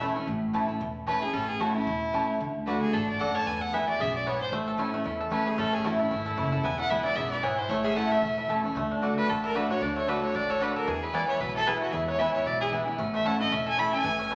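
This joyful, rustic bluegrass excerpt races along at 227 BPM in A major with a swung feel. A biting, clear fiddle with light vibrato sits up front from 1.1 seconds, carrying the melody alongside a twangy, percussive banjo that returns at 4.5 seconds. Beneath them, a full-bodied picked acoustic guitar, mellow mandolin stabs and a woody pizzicato upright bass keep going throughout, while a nasal, metallic lap resonator guitar adds a slide second line in the background until 8.5 seconds, all bathed in a wet studio reverb.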